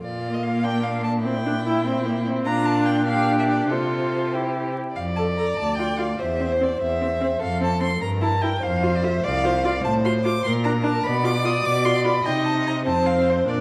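Spirited and cheerful, this brief excerpt of a quick classical-period string quartet movement in F major moves at 98 BPM in a straight 6/8: the first violin sings the expressive melody with vibrato and portamento over the second violin's equally lush, sliding line, while a rich, focused viola accompanies and a clear, focused cello carries the bass, all four bowed players sounding distant in a reverberant recital hall beneath a layer of vinyl crackle.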